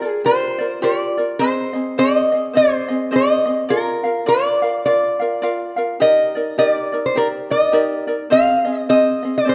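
A lap resonator guitar and a ukulele begin together in this relaxed, sunny Hawaiian excerpt in Eb major, moving at 104 BPM in 4/4 with a gentle swing on the eighth notes. The resonator guitar carries the melody up front, played with fingerpicks and slide, its tone metallic and nasal yet mellow. The light, fingerpicked ukulele, also up front, accompanies over Gm7, Ab, Bb and Ebmaj7, captured by close, detailed microphones in a moderate recital-hall reverb.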